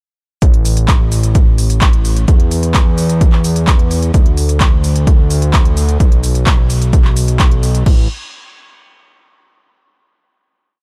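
Dark, dry production frames this euphoric, uplifting festival progressive house piece at 129 BPM in straight 4/4, with a drop from 0.4 s where a punchy four-on-the-floor electronic kick sits up front beside a fat, nasal, detuned sawtooth-and-square analog bass, saturated through tube drive with sidechain pumping and tied to the chord rhythm, while a big-room dance kit adds crisp hi-hats, handclaps, cabasa and crash until 8.0 s, before a final note carries the piece to 9.7 s.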